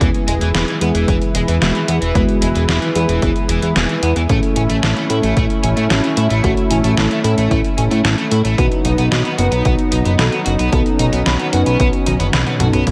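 A lush hall reverb and a haze of digital ambience wrap this short synthwave cut, giving it a cinematic, nostalgic glow at a straight 112 BPM in 4/4. A smooth, detuned sawtooth pad holds sustained chords through chorus, sidechain pumping and shimmer reverb, while a thick, wave-folded analog bass sits up front with a fast filter pluck and saturated body. A biting, double-tracked overdriven guitar picks out a bright riff through lush chorus, low-pass filtering and digital delay, and a round, dark FM electric piano adds decaying stabs coloured by phaser and delay. Underneath, a punchy, overdriven electronic kick anchors a detuned 8-bit drum machine whose tape-tinged snare, hi-hats and toms carry gated reverb. The harmony moves from E to A at 4.3 seconds and on to B at 8.6 seconds, and a drum fill arrives at 12.1 seconds just before the cut.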